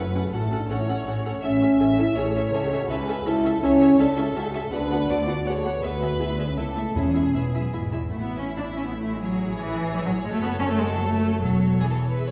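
A dark French horn section sits up front with sustained chords until 7.9 s in this spirited, lively classical-period movement for symphony orchestra, cut from a longer piece at 163 BPM in 3/4 and settling in A major from 3.6 s. Beneath it, muted chamber violins play a veiled melody and a more distant second line, violas give accompaniment in the background, and cellos and double basses share the bass, every string section bowed con sordino with vibrato. Very quiet timpani with calf heads sound from 7.0 to 8.6 s, and the whole orchestra sits in a wet recital hall reverb of 1.6 s.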